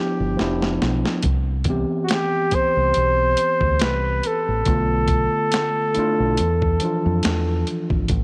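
Relaxed and soulful, this neo-soul R&B passage sits at 70 BPM in C major with a lightly swung sixteenth-note feel, moving through G7, Cmaj7, Bm7b5 and E7(no3). A close-miked flugelhorn with light vibrato carries the melody up front. Beneath it, overdriven tine electric piano chords sound gritty through a combo amp, and a dark, round, punchy fingered bass enters at 0.2 seconds, while a compressed, tape-toned boom bap sampler kit of finger snaps, hi-hat, thumpy kick and medium-tuned snare plays a fill that ends at 1.2 seconds, all set in a moderate plate reverb.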